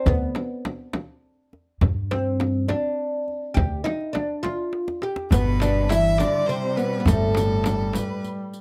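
A steady 6/8 pulse at 68 BPM drives this festive Persian modal ensemble piece, which opens in dastgah homayun on G with a woody, plectrum-plucked fretless oud up front over thumpy pizzicato upright bass, a deep frame drum and a close, dry tombak set back in the mix. After a drum fill, the music shifts to dastgah mahur at 5.3 seconds, where a clear violin with light vibrato and a dark, expressive cello with portamento add second lines, a mellow duduk holds a scooped drone on G3, and a riq adds bright jingles. The sound is intimate and detailed, captured with close microphones and little reverb.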